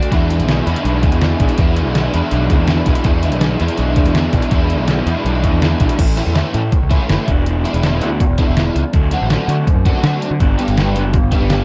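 A detuned 8-bit digital drum machine opens with a thumpy kick, a medium-tuned snare, hi-hat and crash, its sampler-style overdriven kit sitting up front alongside two picked electric guitars playing riffs from the first moment, and a fuzz picked electric bass joins at 0.1 seconds. This is wistful, jangly indie rock at 163 BPM in a straight 4/4, cut from a longer piece. The overdriven electric guitar rings bright through an ensemble chorus, while the raw garage guitar sits in the background with a lo-fi, overdriven edge. The bass is punchy and direct, its fuzz grit pushed forward in the mix. Harmony rests on E7 before moving at 6.0 seconds through A, E7 and D to a closing Gmaj7, all within a dark production touched by light reverb.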